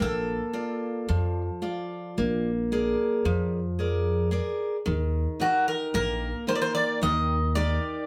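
Melancholic and wistful, this short excerpt of Greek folk music moves in a straight 9/8 metre, cut from a longer piece. A Greek bouzouki carries the melody, its picked double strings sounding metallic with some octave-doubled courses, sitting up front in the mix. A picked steel-string acoustic guitar with a concert tone supplies accompaniment across a broad register, also placed up front. Underneath, a pizzicato upright bass with steel strings gives a woody, growly low end, dropping out at 7.8 seconds while the other two play on to 8.1 seconds. The harmony rests on a Bb7 chord before settling onto Eb at 4.9 seconds, and a wet studio reverb makes the trio sound as if heard from further back in the room.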